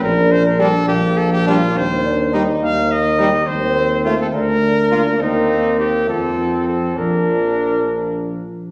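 A steady 6/8 pulse at 69 dotted-quarter beats per minute carries this short classical brass quintet passage in Bb major, cut from a longer piece and tuned slightly low, with a triumphant, noble mood. Up front, a mellow trumpet with light vibrato sings the melody, while an equally mellow tuba, its top end smooth, anchors the bass alongside it. Behind them, a distant, roomy euphonium adds clear accompaniment from the start, and at 0.6 s a close-miked flugelhorn enters on a second line as a French horn joins the accompaniment. The harmony moves from Gm/Bb through Cm/Eb and a rootless F7 chord to Bb/D, then settles through Cm7/Eb and F onto Bb at 7.0 s. A scoring-stage reverb gives the ensemble a spacious, wet halo, though the group sounds heard from further back in a small room.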